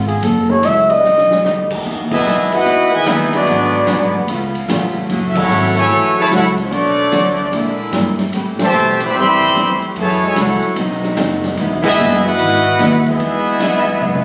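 Captured on a phone in the room, this cut from a longer big band swing piece has a compressed sound and a club-like reverb. It moves at 148 BPM in 4/4 with swung eighth notes in E major, and the mood is joyful and swinging. A dark, veiled trumpet with a bucket mute opens on the melody with vibrato and scooped notes. Beneath it sit a woody pizzicato upright bass, a very quiet hollow-body archtop guitar and a big-room drum kit with a punchy kick, while a baby grand piano adds a brief touch early on. At 1.9 seconds a very quiet saxophone section enters on sustained chords, and from 2.1 seconds a tight, up-front trumpet section carries the melody over a trombone section in the background, with band accents and a closing drum fill punctuating the passage as the harmony returns to Emaj7 at 11.6 seconds.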